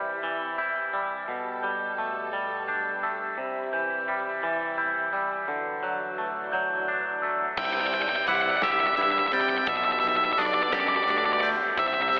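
Up front, a dark, fuzzy octave-fuzz lead guitar enters at 7.6 seconds with a delayed melody, joined by a punchy overdriven picked bass and a huge arena drum kit with bright cymbals in the background, lifting this cinematic, hopeful post-rock excerpt in 6/8 that opens with a clean, twangy electric guitar arpeggiating through chorus and delay, a mellow, bell-like glockenspiel played with rubber mallets, and lush bowed strings holding chords, all colored by a plate reverb and a telephone-like filtered sound.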